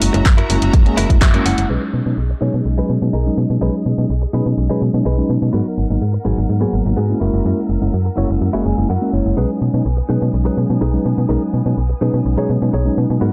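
Funky and joyful, this filtered disco house excerpt pumps along as a snappy, metallic FM bass, a mellow tine electric piano with phaser, a clean, picked direct-recorded guitar riff and bright bowed strings all breathe under sidechain and a low-pass filter, while a punchy, tape-tinged electronic kick and dry analog handclaps and hi-hats drive only the opening before a long filter sweep runs from 1.7 seconds over dark, warm production.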